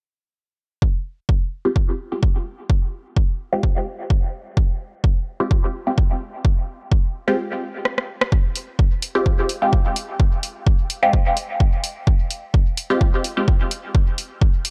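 A muted, detuned dub chord stab of sawtooth and pulse waves leads this cavernous, meditative dub techno excerpt in F minor at 128 BPM, its short filter plucks soaked in phaser and dub echo and pumping against a punchy analog kick that enters at 0.8 seconds. A filter sweep shapes the stab through the opening, and during a brief break, a layered, overdriven deep house kit with hi-hat and rim click joins at 7.9 seconds alongside a drum fill, its snare and hats darkened by low-pass filtering. The recording has a dry, gritty hardware character with cassette tape colour and digital ambience, set over a lightly swung 16th feel and an Fmadd9 chord.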